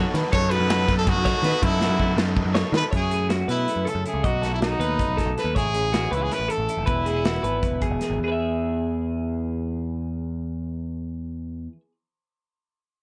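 Racing at 319 BPM counted in eighths, this straight 7/8 math rock and midwest emo fragment in E major feels intricate, with a punchy acoustic drum kit in a pumping studio room that throws in a drum fill from 1.8 to 2.9 s. A biting, double-tracked overdriven guitar riff opens alongside twangy, compressed twelve-string arpeggios, a growling, overdriven picked bass sitting up front, and a brilliant, forceful solo trumpet with light vibrato and analog delay carrying the melody, distant and roomy yet up front. The riff drops out at 2.9 s as a second clean twelve-string takes up accompaniment in the background, while the trumpet continues over chords moving from F#m9 through B7 and Amaj9 to E in a light reverb.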